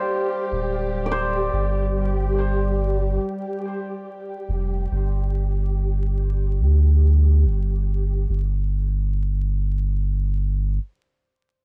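A hammered, shimmering cimbalom melody rings through tape echo until 3.5 seconds, over slow-blooming sawtooth string-machine cellos treated with phaser and ensemble chorus, while a deep, round dub sub bass sits up front from 0.5 seconds in this brooding, cinematic, swung trip hop fragment, its dry, worn cassette sound flecked with vinyl crackle and warbly pitch drift.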